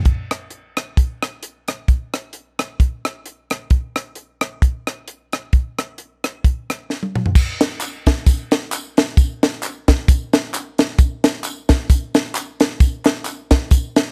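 Gospel groove, soulful and uplifting, cut from a longer piece and carried on a lightly swung 4/4 feel. A tight funk drum kit leads from the start, its kick, high-tuned snare, rim clicks, hi-hat, toms and crash cymbal sitting up front with a dry acoustic character. At 6.9 seconds a drum fill rounds off the opening passage and sets up the next one. At 7.4 seconds a percussion layer of tambourine, tube shaker and group handclaps joins in, recorded close and dry and placed well behind the kit. The room stays intimate, with very little reverb.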